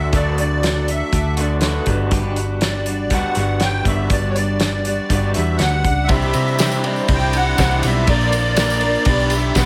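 A reedy musette accordion carries the melody from the opening moment of this hopeful, nostalgic folk rock and heartland rock excerpt, moving at 121 BPM in a straight 4/4. Beneath it, a picked twelve-string acoustic guitar shimmers in the background, while an electric guitar through a small old amp plays a twangy, slightly broken-up riff with tremolo. A round, hollow-body short-scale electric bass and a loose indie drum kit with a fat snare, punchy kick and dark cymbals sit up front, the kit working hi-hat, ride, snare and kick. At 6.1 seconds the harmony shifts from D and Gmaj7 to Cadd9, Bb and G/B, and a very quiet, lush bowed string section enters with a close, jingly tambourine. Light studio reverb wraps the whole.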